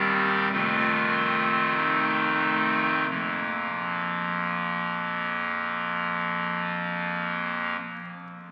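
This classical fragment is a slow chorale-style passage for solo pipe organ, majestic and reverent in mood, in a four-beat metre. The organ speaks through a clarinet reed stop with baroque voicing, giving a hollow tone with a touch of chiff at the start of each note, and it sits up front in the sound. The opening phrase moves from a C minor chord over E-flat to F7 and slows down until 3.1 seconds, when a second section begins on a bare B-flat sonority. The organ reaches from deep pedal notes up into the middle register and falls silent at 7.8 seconds, while the long church reverb rings on in the resonant space. Everything arrives through the patina of a very old 78 rpm record, its vinyl crackle running beneath the sustained chords.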